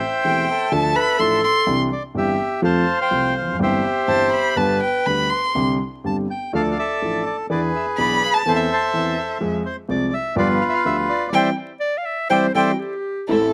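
A reedy, smooth bandoneon carries the melody up front in this elegant, nostalgic tango, a short cut from a longer piece in C major at 124 BPM in 4/4 with a rubato feel. A single bowed violin shapes a second line, nasal and boxy with expressive vibrato and portamento, while an intimate vintage concert grand piano gives deep-bass accompaniment with its action noise audible. A clear, close-miked clarinet in classical style adds another second line from 1.0 seconds, its slapback echo setting it apart, then returns at 11.8 seconds for a band accent that closes the phrase. Dark chamber strings arrive at 13.3 seconds with soft-attack stabs at the very end. The harmony moves through chords such as Am7, Dm, E7 and Fm before settling on Cadd9, and the outdoor recording carries little reverb, with vinyl crackle beneath the dry sound.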